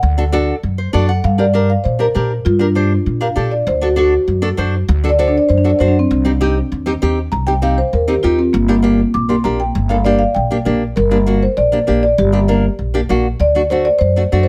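A soft-mallet marimba and a thumpy, pizzicato upright bass open this dry, danceable and fiery cumbia fragment. At 0.2 seconds an up-front, full-bodied, fingerpicked nylon-string guitar with audible finger squeak joins them and adds a brief fill, before the mellow rosewood marimba takes a round-toned solo from 1.2 to 11.0 seconds over minor-key chords.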